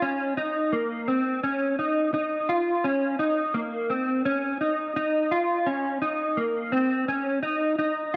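A gritty hardware recording set in a lush hall reverb with a 2.6-second tail frames this brief, hazy dream pop fragment at 85 BPM in straight 4/4, tuned to A4 = 437 Hz. A lone mellow electric guitar plays for the full 8.2 seconds, fingered and compressed with a dark, clean tone, sitting up front between Bb3 and F4 and coloured by ensemble chorus and tape echo. The mood is ethereal, a short cut from a longer piece.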